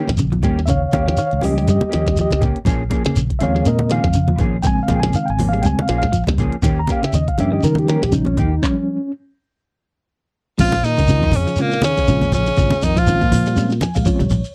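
A hypnotic, defiant afrobeat groove at 121 BPM in Bb dorian swings its sixteenths over a glitchy electronic kit with a deep kick, tiny snare and clicky hats, joined by grainy shekere, low-tuned thin-skinned congas and a round fingered bass, while a picked clean guitar arpeggiates in the background and a dark, chorused guitar adds stabs in the opening; a reedy electric piano with tremolo solos up front until a stop at 8.6 seconds, and from 10.6 seconds a punchy tenor saxophone carries the melody over a veiled, scooping bucket-muted trombone second line, all in a dry, close 1970s-style recording with lossy artefacts.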